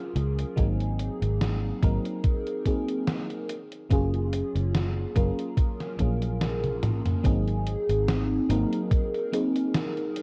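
A lush, dreamy FM electric piano with a soft pad layer, colored by phaser, analog chorus and tape echo, drifts over Gbmaj9 and Ab9 chords in this woozy, nostalgic vaporwave fragment at 72 BPM with a light swing, joined by a dark, round fingered electric bass with tube saturation, a thumpy electronic kick, and a gated 80s digital drum machine whose hi-hat, snare and toms ring with gated reverb, the kick dropping out for a drum fill from 6.4 to 7.2 seconds, all heard through worn, warbling old tape and light reverb.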